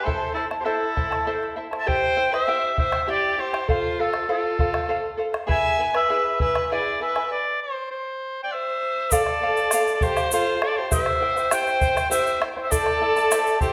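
In a straight three-beat metre, this wistful yet festive Andean folk excerpt sets a clear, up-front oboe melody over a rich, bowed violin second line with vibrato and portamento, mellow fingerpicked charango with shimmering double strings, and a round, dry bombo, all in a recital-hall reverb, with a stop from 7.3 to 9.1 seconds before a grainy egg shaker joins at 9.1 seconds.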